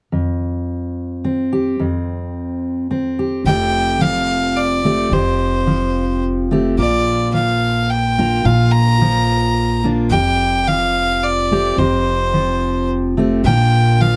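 In a steady 3/4, this hopeful, pastoral acoustic folk excerpt opens on a full-bodied, up-front fingerpicked steel-string guitar with audible finger squeak, joined at 3.4 seconds by a woody, thumpy pizzicato upright bass and at 3.5 seconds by a close, nasal bowed fiddle carrying the melody with light vibrato and an airy bow, set in light reverb as the chords move between Fadd9 and Bb.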